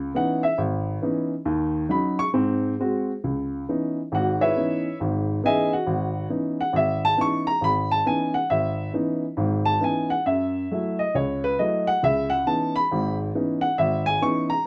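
Swinging and moody, this solo jazz excerpt in C# minor at 137 BPM features a dark, woody upright piano, mellow and up front, played rubato with a swung eighth-note feel across a range from G#1 to C#6, moving through C#m9, D#m7, G#7 and F#m7 harmonies in a small room with moderate reverb.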